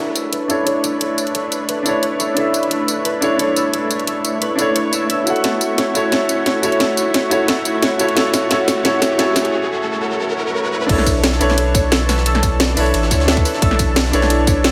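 An up-front grand piano with a smooth, vintage tone opens this dreamy, rolling liquid drum and bass excerpt at 176 BPM in B minor, its accompaniment run through a low-pass filter sweep and delay as a thick, detuned sawtooth pad holds chorused, sidechain-pumped chords and a ringing, thumb-plucked concert harp plays arpeggios in the background. A riser sits low in the mix through the build-up while the harmony moves from Bm11 to F#m7. The drum kit brings a cracking snare, bright hats, crash cymbal and tambourine with overdrive and a small room, playing a fill from 5.4 to 9.5 seconds before a brief break. At 10.9 seconds the drop lands back on Bm11, adding a deep, mellow sub bass with octave up front, a tight overdriven electronic kick, and a gritty, pitched-up jungle sampler-style kit with a high-tuned snare tucked behind. The whole mix sits in a moderate digital room reverb, and the piece is cut from a longer track.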